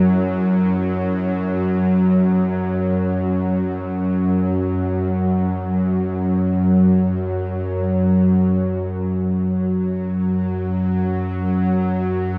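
Dark and unsettling, this dark ambient drone fragment drifts in free time, steeped in a huge, wet reverb with a nine-second tail. A tense, string-like bowed drone sits up front from start to finish, its sawtooth edge, noise layer and vibrato giving it a bright, sustained presence between F#2 and F#3. For only the first 2.2 seconds, an eerie, inharmonic synth bell traces barely audible, mellow arpeggios beneath it, its detuned tones colored by chorus.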